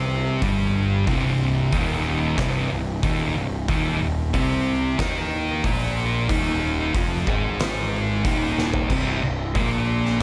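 A small room ambience surrounds this brooding, hypnotic stoner and doom metal fragment at 92 BPM in a straight 4/4, where two thick fuzz guitars play the riff from C minor to an Eb power chord at 3.7 seconds: one dark and tucked in the background, the other up front. A bright, growly fuzz bass underpins them with overdrive and tube saturation. An oversized low-tuned drum kit, gritty and saturated with a punchy kick, fat snare and dark cymbals in a pumping stone room, enters at 0.4 seconds and throws in a fill at 8.6 seconds before the harmony drops out.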